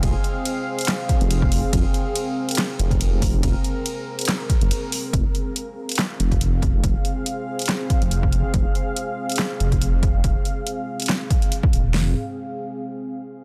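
Dense and heavily limited within a digital ambience, this meditative, heavy deep dubstep excerpt rides a swung half-time feel. A rumbling, detuned sawtooth bass sits up front beneath a moody pad of chorused, reverb-soaked sustained chords. Two overdriven electronic drum kits stack a punchy kick, fat snare, hi-hats and toms with handclaps and ride cymbal, opening on a drop that gives way to a brief break at 4.7 seconds.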